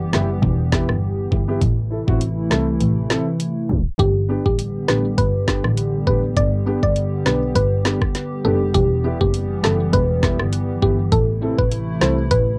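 A bowed double bass sits up front, rich and focused with a boxy vibrato, anchoring this hypnotic, tough dancehall excerpt cut from a longer piece. An electronic island pop drum kit shares the foreground, its knocking kick, woody snare, metallic hi-hats and rim clicks carrying a lightly swung groove, with the kick muted from 2.8 to 4.0 seconds and a tape stop at 3.7 seconds. Beneath them, a hollow, flute-like pad holds sustained chords with a slow attack and chorus, while a dark, mellow grand piano with long sustain adds accompaniment, both pumping against the sidechain. At 4.0 seconds a round, percussive synth pluck enters with the melody, its fast attack decaying into a chorused shimmer. The harmony moves from Em to Am, then settles on G before returning through Em and Am, and the whole has the light reverb and worn character of a home cassette recording.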